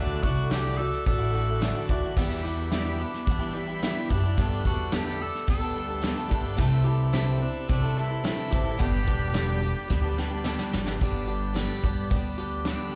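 Folk rock and heartland rock with a warm, jangly mood, caught as a short excerpt of a live club gig heard through the venue's PA, with small-room ambience and club reverb. A forceful, bright tenor saxophone with vibrato carries the melody until 10.5 seconds over a boxy, swing-style picked acoustic guitar with fresh strings and a slightly broken-up, lo-fi electric guitar riff, both with slapback echo, while a very quiet, reedy tonewheel organ with key click and slow rotary speaker holds sustained chords. A woody, thumpy pizzicato upright bass sits up front beside a distant, roomy brush drum kit with a punchy kick and medium-tuned snare, which plays a fill at 9.9 seconds.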